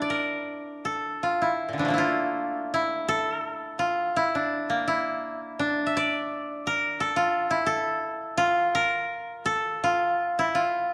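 A solo koto, played with fingerpicks, carries this short passage of Japanese traditional music from 0.0 to 10.9 s. Its tone is woody and dry, and it sits up front in the sound. The mood is solitary and meditative, and the phrasing moves in rubato over a loose 4/4 with uneven beats. The instrument spans from Bb2 up to E5, reaching from its low register to its upper notes. A moderate concert hall reverb surrounds the acoustic koto and gives it a sense of space. The recording is a fragment cut from a longer piece.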